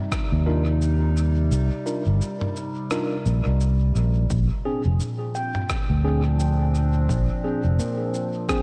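A lightly swung 86 BPM groove in 4/4 drives this meditative, deep ambient dub fragment in C minor. A punchy electronic kick drops out from 1.5 to 4.3 seconds beneath a muffled lo-fi sampler-style kit of rim click, shaker and toms sent through dub echo, while an amped, up-front fingered electric bass anchors the low end. A warbling, detuned tape-like pad with chorus and phaser sustains Cm11 moving to Bb7, a worn, slightly out-of-tune tine electric piano adds dub-echoed stabs, and a ringing stainless-steel handpan enters at 5.3 seconds with airy arpeggios in diffuse ambient delay, the whole mix soaked in a dreamy, lush hall reverb.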